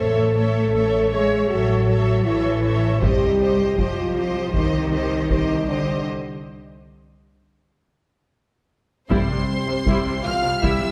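An epic orchestral film score cue at 79 BPM, adventurous and triumphant, in which a lush violin section carries the melody over a warm second violin line, intense violas, portamento-tinged cellos, a focused double bass section and dark, tight sustained French horn chords, all set back in a wet scoring-stage reverb. A taiko ensemble with heavy sticks enters at 3.0 seconds, and after a break with a drum fill the music lands on a C chord at 9.1 seconds, where a clear trombone section, a distant, very quiet mellow tuba and background timpani join in.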